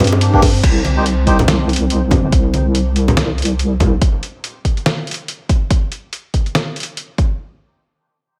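Deep dubstep in a half-time, swung feel, this meditative and cavernous fragment of a longer piece opens on a G minor chord. A dark analog pad built from detuned, wave-folded square and sawtooth tones sits in the background with a slow attack, long release and subtle chorus, while a deep, soft wobble bass of square and sine waves sits up front, thickened by chorus and tube saturation until it stops at 4.0 s. A gritty, pitched-down, tape-flavored sampler-style kit of crash, hi-hat, ride and a medium-tuned snare plays from the start, and an overdriven electronic kick, layered and re-recorded in a large room, joins it at 0.3 s and stays prominent. Ringing acoustic congas and bongos struck with hard hands sit farther back in a small room, trailed by dub echo. Brief reedy, breathy melodica stabs with a nasal, band-limited vintage character also carry dub echo, and a light reverb wraps the whole mix.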